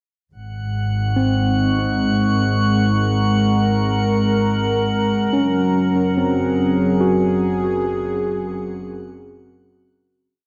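In a straight 3/4 at 72 BPM, this serene, weightless ambient piece in Ab mixolydian places a smooth, chorused sawtooth pad up front, holding slowly shifting chords that move from Absus4 to Gb at 5.3 s, over a veiled, bowed double bass section sustaining muted root notes, while a glassy sine texture with its own reverb holds a drifting high note and a clean tine electric piano enters at 1.2 s with scattered, tape-echoed arpeggios, the mix steeped in a long plate reverb and cassette tape character before fading out from 7.0 s.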